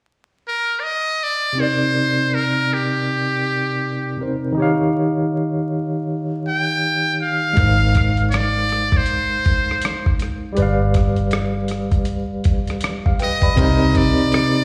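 R&B and neo-soul with a smooth, sultry mood and a swung 4/4 lilt, this excerpt from a longer piece opens on a close, buzzy metal-muted trumpet melody with light vibrato, slapback echo and plate reverb, joined at 1.5 seconds by a barky tine electric piano pulsing with fast tremolo through a combo amp as the chords move from Cm7 to Eb7. At 7.6 seconds a round, foam-muted fingered electric bass and a gritty, tape-warm sampler-style drum kit with thumpy kick, hi-hat, rim click and crash cymbal arrive on Ab6, moving through G7 and back to Cm7. The whole performance sounds like a live gig heard through a venue's PA, with recital hall reverb and vinyl crackle.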